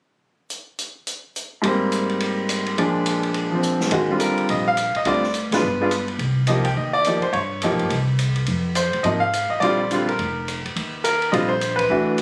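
Captured on a phone in the room and touched with light reverb and compression, this cut from a longer jazz piano trio piece has a sophisticated, warm mood. It swings at 211 BPM in 4/4 in Eb major, with the acoustic drum kit opening alone at 0.5 seconds, its dark cymbals, medium-tuned snare, boomy kick and hi-hat ringing in a small, natural-sounding room. The bright grand piano comes in at 1.6 seconds, brilliant and up front, carrying the melody over rich harmony that moves from Abmaj9 and Bb7 through Ebmaj7, Dm7, Cm7 and Fm7. A drum fill ushers in the pizzicato upright bass at 3.9 seconds, its woody steel-string tone sitting low beneath the trio. The band punctuates the phrases with ensemble accents before the passage settles onto an open Eb5.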